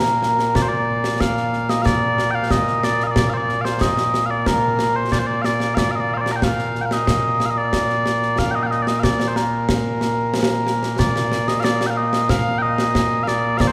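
Mellow, sweet small bagpipes carry a continuous, up-front solo melody from Bb2 to Bb5 in this ceremonial, proud piece of Scottish traditional pipe music at 92 BPM in a straight 4/4 and Bb major, joined from 0.2 seconds by up-front concert snare and bass drums with bright cymbals, all set in the lingering reverb of a church or concert hall, with the melody moving into a new section at 11.0 seconds in this passage cut from a longer piece.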